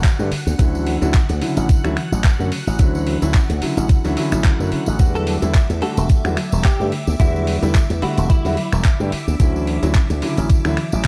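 A thumpy, tape-warm electronic kick drum sits up front in this cosmic, groovy nu-disco excerpt at 109 BPM in 4/4, with a 56% swing on the 16ths. A growly, punchy slap bass run through an envelope filter joins at 0.2 seconds alongside a grand piano's accompaniment, both riding the groove over chords that move between a rootless Em11 and Dmaj9. A gritty, overdriven sampler-style kit adds finger snaps, handclaps and hi-hat, while a tambourine stays in the background and a very quiet, round pluck plays arpeggios. Behind them, a lush vintage string machine holds mellow sustained chords through phaser, ensemble chorus and sidechain pumping. From 5.2 to 8.7 seconds, a twangy, clean electric guitar carries a short melody coloured by chorus and dub echo, all within a dark, dry production.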